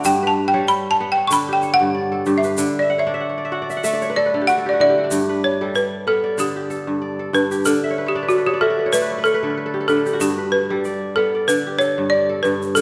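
A woody, buzzing balafon struck with hard rubber mallets leads this hypnotic West African string and xylophone excerpt, taking a close-miked, full-bodied solo over the first 5.1 seconds while a ringing, crisp fingerpicked kora spins arpeggios beneath it and adds fills at 2.8 and 7.8 seconds, all set in a reverberant hall with a grainy, bright egg shaker, its vintage tone band-limited, as the swung groove sways between G and D.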